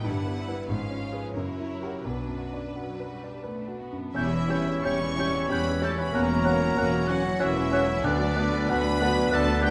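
In a rubato 3/4 that moves between 84 and 98 BPM, this brooding, passionate romantic movement for piano and orchestra in B minor opens with an up-front, clear grand piano carrying the melody together with a violin section. Beneath them sit a lush second violin line, a very quiet viola accompaniment, and cellos and a distant double bass section holding the bass. At 4.1 seconds dark French horns add sustained chords and a bassoon joins with soft accompaniment, followed by an oboe, a pure-toned flute and a clarinet on second lines, very quiet trombone chords and trumpet stabs in the background, all set in light reverb with close, detailed microphones.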